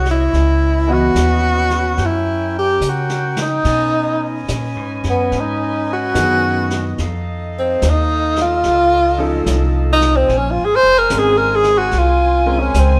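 This excerpt of a jazz ballad has the intimate sound of a band playing live together in a stone room, with moderate reverb around the instruments. At a slow 73 BPM in Bb minor with a swung feel, a clear tenor saxophone carries the melody up front throughout, its tone marked by vibrato and subtone. A concert grand piano accompanies with a smooth, vintage character and deep bass, while a mellow saxophone section holds tight, soft-attacked chords behind it. The upright bass is woody and thumpy, plucked on gut strings and sitting close in the mix. A brushed drum kit with dark cymbals and a rolled-off top enters at 0.1 seconds and adds a fill between 2.8 and 3.7 seconds, under a wistful harmony that moves through chords such as Dbm11, F7b13 and Bbm9.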